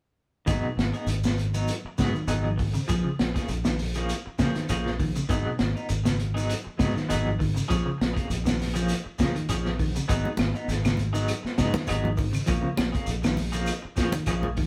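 Recorded by a band playing live in one room with moderate studio reverb, this funky, driving afrobeat excerpt at 100 BPM in G# dorian rides swung 16ths on a gritty, saturated breakbeat kit with a punchy kick and high-tuned snare up front, a round, dark fingered electric bass, and a grainy, distant shekere. Two clean, hollow-body semi-hollow electric guitars move between G#m7 and A#m7, one playing arpeggios in the background and the other adding tremolo-touched stabs. Bright, hard-handed congas and woody claves join in the background from about 10.3 seconds.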